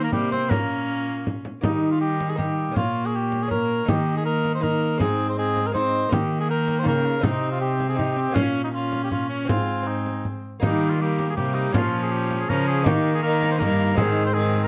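An up-front, mellow cor anglais with light vibrato carries the second line in this rustic yet courtly renaissance-style consort dance, moving at 160 BPM in 3/4 beneath a warm, close-miked oboe melody. A gut-string bowed viola and a rich, reedy cello on the bass lend period colour, while a bright, delicate fingerpicked lute with double strings sits in the background. A dry frame drum joins at 0.1 s, and this cut from a longer piece is captured by detailed microphones with light reverb.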